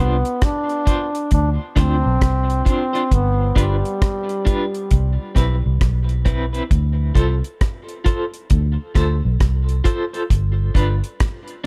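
A bright trombone opens this short cut from a longer roots reggae piece, joined at once by a muted bass and a slightly broken-up electric guitar, with the deep drum kit arriving at 0.2 seconds. The mood is hypnotic and laid-back at 67 BPM in 4/4, with a swung sixteenth-note feel in D dorian, moving through Dm7, G7 and Cmaj7. The trombone carries the melody up front with light vibrato, a punchy attack and a smooth top, its lines trailed by tape echo until it stops at 5.3 seconds. The vintage fingered bass is dark, round and foam-muted, sitting prominently alongside dry drums built from hi-hat, rim click and a tight kick. The picked guitar accompaniment is compressed and warm, colored by tremolo and tape echo, and carries on to the end at 11.7 seconds. The mix is echo-heavy with very little reverb.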